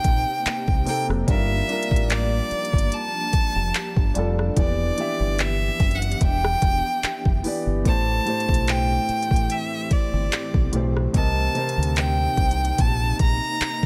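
A bright, close solo violin sings the melody up front over a moody, sensual contemporary R&B groove at 73 BPM in A minor, alongside a knocking, tape-tinged electronic drum kit of kick, smooth hi-hat, handclaps and rim click, a dark, round fingered electric bass, an intimate grand piano with audible action noise, and an ethereal, detuned pad washed in chorus and reverb in the background, all moving through Cm7, Gm7, Em7 and Am7 in this excerpt cut from a longer piece.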